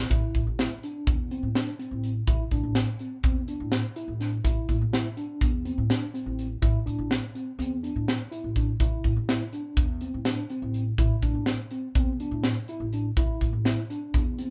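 A mellow tine electric piano, clean through its built-in speakers, plays arpeggios over a woody, steel-strung pizzicato upright bass in this tense, brooding progressive instrumental in 9/8 at 248 BPM counted in eighths, joined at 0.1 seconds by an airy, polished studio drum kit with a high-tuned snare and punchy kick sitting up front, as the band plays live together in a small room with moderate reverb, holding a single A minor chord throughout this fragment of a longer piece.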